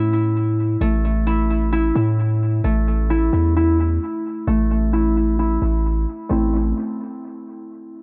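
Set in a half-time 4/4 feel at 131 BPM, this eerie, hard-hitting hip hop and trap excerpt, tuned to A4 = 438 Hz, pairs up-front, fingerpicked concert harp arpeggios, acoustic, ringing and mellow through a low-pass filter sweep and dub echo, with a deep, long-sustained 808-style sine bass that has a fast attack and decays until 6.7 seconds, all moving from A5 to Am in an echo-heavy mix with light small-room reverb.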